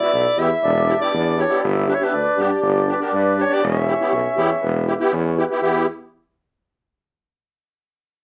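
A straight 4/4 pulse at 120 BPM drives this festive yet bittersweet klezmer fragment, cut from a longer piece, as it moves from E minor to G and back. A warm, softly attacked clarinet carries the jazz-style melody with light vibrato, while a mellow, reedy accordion adds a full second line. A shimmering musette accordion, close-miked, dry and up front, plays accompaniment, and a clear, punchy tuba with scooped notes and a vintage, pop-style tone holds the bass from 0.1 s. The group sits in a moderate studio reverb, and a new section arrives at 5.6 s just before the parts stop at 5.9 s.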